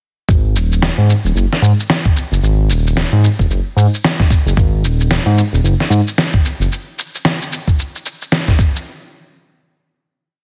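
From 0.3 seconds, a short organic downtempo piece opens with a single groove: a sampler-style electronic kick, a shaker and snare layer, and a smooth synth bass all arrive together. The mood is warm and meditative, carried by a relaxed swung feel in common time. The bass plays a syncopated riff in a low register, its nasal, detuned tone blending sawtooth, square and triangle waves with a fast attack, long sustain and vibrato, while sidechain pumping makes it breathe against the beat. Up front, the compressed kick is soft and thumpy with a gritty, tape-warm edge, and the shaker and snare form a layered beat around a fat snare, set a little lower in the mix. The bass drops out at 6.7 seconds, leaving the drums to carry on alone until the shaker and snare close the piece at 8.8 seconds. A light reverb surrounds the parts, and the master is dense and heavily limited in a modern style.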